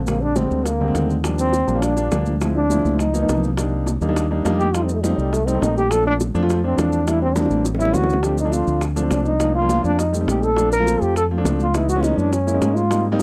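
Danceable and lively, this excerpt from a longer Afro-Cuban jazz piece moves at a brisk 206 BPM in straight 4/4, set in Bb major across two passes of the same section, with the second beginning at 8.2 seconds. A breathy trombone takes the solo up front, its mellow, whispered tone carrying a light vibrato and soft attack that feels intimate even as it sits in a roomy, distant space. Beneath it, a round, punchy fingered electric bass sounds dark and direct, while a vintage grand piano offers smooth accompaniment with audible action noise through rich jazz harmony such as Bb13, Dm7b5 and Gbadd9. The percussion bed blends tight, high-tuned bongos, very quiet congas with a bright, thin skin heard from a large room, and grainy maracas set close and dry at a low level. Drum fills arrive at 2.7 and 7.4 seconds, and the overall production has the dry, close feel of a 1970s studio recording with little reverb.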